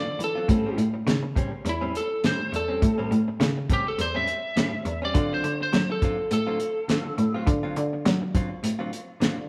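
Straight eighths in 4/4, with a light swing on the sixteenths, drive this swaggering, gritty soul blues excerpt, built on a cloth-damped, thuddy drum kit with a fat snare and tight kick and a biting, nasal bowed cello carrying the bass up front. A slightly broken-up, dark lead guitar solos through the opening, its melody ending at 7.5 s, while a clean, direct-recorded electric guitar adds compressed stabs bathed in spring reverb. The chords move from A7#9 to D7#9 at 5.2 s, and the band sounds live together in a moderate stone room.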